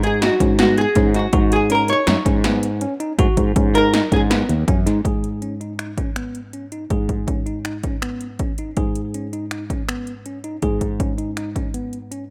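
A dark, clean, double-tracked archtop guitar leads this brooding, driving progressive instrumental in 5/4 with a hollow-body jazz solo until 4.7 seconds, over a round fretless bass with lush chorus, bell-like electric piano arpeggios drifting through tape echo, and punchy 80s electronic drums with gated snare, metallic hats and finger snaps, all in a rough home-demo mix with light reverb that reaches a break at 11.7 seconds.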